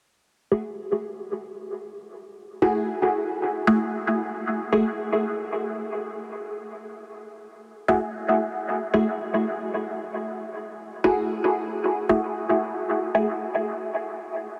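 Techno in free time and F# minor, this hypnotic, hazy fragment cut from a longer piece rests on a single F#m9 chord. A filtered dub chord stab, muted and deep with a detuned sawtooth and pulse-wave body and a quick filter pluck, sits up front from 0.5 to 13.3 seconds, colored by phaser and dub echo. A huge ambient reverb with an 8.2-second tail wraps the stabs in a wet haze, and the master is dense and heavily limited.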